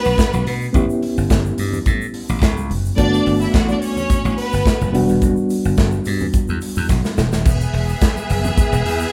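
Disco with a sultry, danceable feel, where a punchy, up-front slap bass and a tight-kicked studio drum kit drive under a mellow, reedy electric piano with fast tremolo that stops at 7.5 s after a drum fill, while a lush, distant bowed string section, very quiet soft-handed congas and a grainy egg shaker in the background fill out a live-room sound with moderate large reverb, moving through Bm7, A7, Gmaj7 and Em7 before landing on E.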